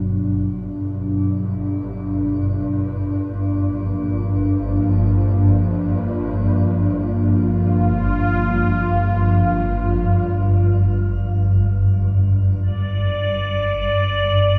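In free time, this cavernous, unsettling dark ambient drone, tuned to A4 = 438 Hz and cut from a longer piece, fades in a swarming, detuned low drone from G1 to G2 alongside a sweeping, resonant pad of full-bodied sawtooth chords moving from Bm to Bb with ring modulation, chorus and shimmer reverb, until the pad stops at 12.6 seconds and an icy, crystalline glass pad enters on a high D5 at 12.8 seconds over a G5 chord, all bathed in a wet cathedral reverb.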